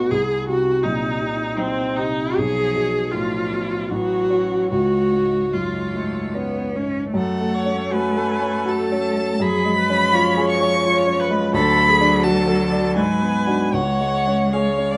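In a swaying triple metre pulled freely by rubato, this excerpt from a slow romantic movement for piano quartet unfolds with a melancholic, solemn gravity. The dark, mellow baby grand piano and the clear, focused viola open the accompaniment together at 0.0 seconds, both sitting up front, the piano's vintage tone ringing with long, smooth sustain. At 0.8 seconds the violin enters with the melody, a rich, expressive line coloured by vibrato and portamento that sounds slightly distant. At the same moment the cello adds a second line beneath it, with soft attacks, sliding portamento and vibrato, placed a touch lower in the balance than the others. Around 7.2 seconds the music moves into a new section, its harmony shifting through minor and dominant colours before settling toward a half-diminished turn and a dominant close. Light reverb and a gently rolled-off top end give the whole a softened, intimate sheen.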